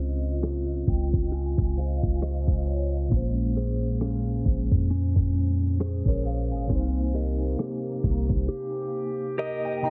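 A deep, round 808-style bass sits up front in this late-night, sensual contemporary R&B excerpt at 67 BPM in Bb dorian, swinging on sixteenths beneath a gritty, overdriven sampler-style kit of thumpy kick, hi-hat and rim click. A clean tine electric piano with ensemble chorus plays accompaniment and fills over Dbmaj9, Bbm9 and Cm7, while a picked, compressed electric guitar arpeggiates through tape echo, and a dry, woody koto sits faintly in the background from 4.0 seconds. A filter sweep runs throughout and an electronic swell arrives near the end, with the bass and drums stopping at 8.5 seconds for a break, all heard through a heavily compressed, muffled radio-style sound.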